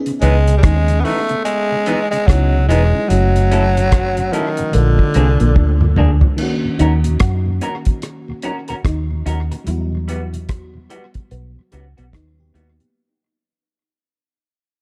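A cloth-damped, thuddy drum kit with a tight kick and dark cymbals sets a swung lovers rock reggae groove at 73 BPM, with a round, foam-muted fingered bass sitting up front beside it. A growling, raspy tenor saxophone with tape echo carries a sweet, romantic melody until 6.0 s, while a twangy, slightly broken-up guitar plays a phased riff and a darker second guitar adds background stabs over a lush, dreamy FM electric piano and a mellow, very quiet organ with slow rotary. After a drum fill from 5.6 s, the chords move into a second section that fades out from 6.4 s to 13.0 s, all under a dark production with light reverb.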